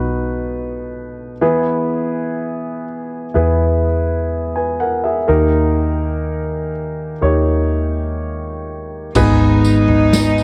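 Pop ballad at 62 BPM, heartbroken and longing, where a dark, mellow grand piano with long sustain and cassette-tape coloring carries the accompaniment over a round, foam-muted fingered electric bass through B7, E and D#, until at 9.2 seconds a floating, sul tasto cello section, a natural country drum kit with punchy kick, crashes and toms, and a jingly tambourine join on G#m, all set in light reverb with a homemade cassette feel in this brief cut from a longer piece.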